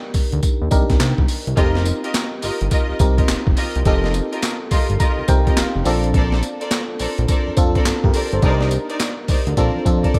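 A swung 105 BPM groove in 4/4 drives this bouncy, flirty new jack swing R&B piece in Bb major, built on a gritty, overdriven sampler-style drum kit with a thumpy kick, high-tuned snare, handclaps, hi-hat and tambourine, treated with gated reverb and sitting up front before a drum fill at 9.6 seconds. A fat, detuned analog bass with a filter sweep anchors the low end, while a glassy, bell-like FM electric piano with chorus carries the Cm9, F9sus4 and Bbmaj9 chords and takes a fill from 4.4 seconds. From 1.6 seconds, a lush bowed string section adds stabs with vibrato, portamento and digital delay.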